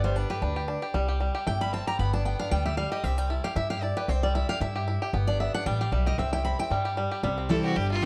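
A dry, close studio sound with a 1970s feel frames this joyful, driving bluegrass excerpt, cut from a longer piece and swinging along on alternating G and C chords. A picked dreadnought guitar takes the lead with a solo through 7.2 seconds, while a twangy, percussive banjo played with fingerpicks rolls out arpeggios and a woody, thumpy pizzicato upright bass anchors the bottom, all sitting up front. At 7.5 seconds a single bowed fiddle cuts in with a biting, intense melody touched with light vibrato.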